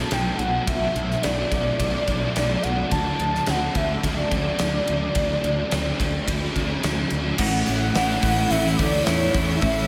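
Blissful and wistful, this short cut from a longer shoegaze and dream pop rock piece moves at 107 BPM in a straight 4/4, centred on D major and drifting from Bm7 to Dmaj7 before settling on A at 7.4 seconds. A velvety synth lead carries the melody between C#5 and A5, its detuned sawtooth and triangle voices sustained and mellow, with vibrato, chorus and tape echo adding shimmer. Beneath it, a thick fuzz guitar thickened by ensemble chorus and a crunchy overdriven guitar tucked into the background play riffs, the latter trailed by reverse reverb. A growly, fuzzed fingered electric bass anchors the low end, while a gated 80s drum kit enters at 0.1 seconds with a punchy kick, fat snare, bright cymbals and hi-hat in an airy stone room. The whole mix is soaked in a huge ambient reverb, giving the dense layers a hazy, dreamlike glow.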